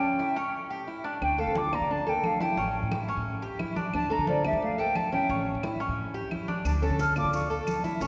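A distant silver concert flute carries the melody with pure, tongued tone and expressive vibrato in this danceable Latin excerpt of Cuban son and guajira at 177 BPM in D harmonic minor, while an up-front Cuban tres picks metallic double-string arpeggios and a dark, fingerpicked flamenco guitar adds a second line. After a brief break, a thumpy gut-string upright bass played pizzicato, ringing soft-handed congas and dry claves in the background join at 1.2 seconds, over chords moving between D5 and A7. Grainy, mellow maracas arrive at 6.7 seconds, and a long church reverb lends the whole recording a resonant, hall-like space.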